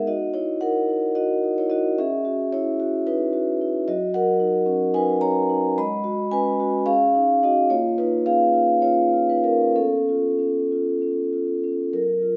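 Contemporary classical music for solo vibraphone, warm and playful, moving in a rubato 7/8 at roughly 186-228 BPM counted in eighths, with the instrument tuned to A4 = 439 Hz. Played with soft mallets and the motor off, the vibraphone sounds mellow, metallic and ringing, sitting up front across a span from F#3 to B5 as the harmony drifts from D#m through C#madd9, F#6 and G#m7 to a closing C#aug7 near 9.8 seconds. A wet recital hall reverb surrounds the instrument through this 12.4-second passage cut from a longer piece.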